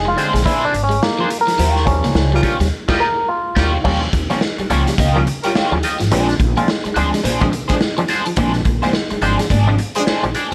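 Funk excerpt at 106 BPM in Bb mixolydian with a strutting, energetic swing on the 16ths, opening on a mellow, stringy clav solo through auto-wah over pizzicato upright bass with woody steel strings, a twangy, slightly broken-up wah guitar, a clean guitar riff sitting in the background in spring reverb and a saturated, gritty garage drum kit with a punchy kick up front, with a band accent at 1.6 seconds before a smooth-topped horn section with light vibrato enters at 2.3 seconds, all in a dry sound over Bb9 and Eb9 chords.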